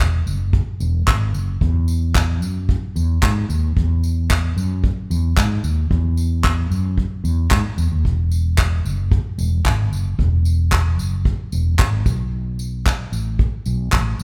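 Heartfelt and easy-going, this acoustic pop passage, cut from a longer piece, moves in a straight 4/4 feel. A fretless electric bass carries the low end throughout, its amped tone dark and round as it ranges from E1 to G#2, sitting up front in the mix. Beside it, an unplugged drum kit plays bundle sticks with a tight kick, handclaps and tambourine, its sound airy and polished as though captured in a small room, and it too sits up front. Both parts play from the start to the end, and the same section repeats at 8.1 seconds. Moderate recital hall reverb lends the pair the spacious resonance of a church or concert hall.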